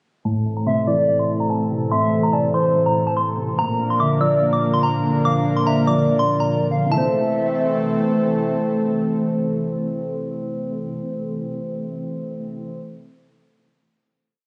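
A half-time trap pulse at 144 BPM in 4/4 frames this short, brooding hip hop piece in A phrygian, with a melancholic air throughout. Soft, round electric-piano-like synth keys sit up front, playing a mellow patterned arpeggio in eighths that repeats like a sampled loop, coloured by chorus and phaser. Alongside them, a smooth, detuned sawtooth pad holds slow-attack sustained chords, while a delicate, tinkling FM tine bell with a vintage warble loops a high melody. A hollow, woody clarinet-like lead adds a sparse, dark counter-melody with vibrato and delay. The opening breakdown moves from Am to Bb under a filter sweep, then settles back on Am for a final chord from 6.9 seconds, the keys lingering until 12.8 seconds. A moderate, lush hall reverb and the compressed, club-like ambience of a phone recorded in the room surround the whole.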